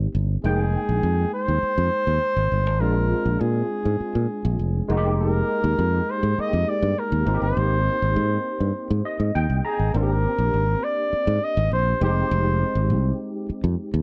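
Urban and bittersweet, this polished 1980s jazz-funk pop cut, taken from a longer piece, moves at 101 BPM in a straight 4/4 feel in F dorian. A fingered electric bass sits bright, punchy and up front from the start, while a barky tine electric piano, lightly overdriven through a combo amp and thickened by ensemble chorus, supplies the accompaniment. A flugelhorn enters at 0.4 seconds as the solo melody, its pop-style phrasing marked by scooped notes and a warm, roomy, slightly distant tone. The harmony moves from Fm11 through Bb7 to Abmaj7, and the electric piano plays a fill at 8.8 seconds before a new section opens on Abmaj9#11 and settles on Fm9. The flugelhorn's line ends at 13.2 seconds, and the whole has the dry, close sound of a 1970s-style studio with light reverb.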